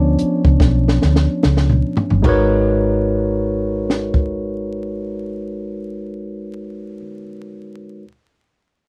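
A dry, close 1970s-style studio sound with vinyl crackle frames this late-night, introspective R&B and neo-soul fragment in G# minor at 73 BPM, with a swung 16th-note feel. A barky, lightly overdriven tine electric piano heard through a combo amp takes a solo over C#7b9 before the harmony settles on G#m11 at 2.2 seconds. A woody, round fretless bass with ensemble chorus holds the low end, and a compact cocktail kit with a high-tuned snare and punchy kick plays a fill before stopping at 4.3 seconds; the bass drops out at 7.0 seconds, leaving the bright electric piano to finish.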